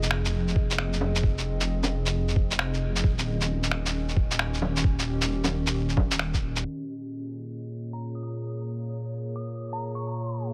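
A warbling, lo-fi pad with chorus and built-in reverb holds sustained chords across this wistful, nocturnal future garage excerpt at 133 BPM in Bb dorian, pumping against the kick over Fm7 and Eb7. Underneath sit a deep, rumbling detuned saw bass, a muffled thumpy kick pitched down, and a tape-toned shaker, finger snaps and bongos with filtered snare and perc, all dropping out by about 6.6 seconds. A filter sweep then runs through the closing section on Bbm7, where a faint, crystalline FM bell with chorus and digital delay enters high at 7.9 seconds.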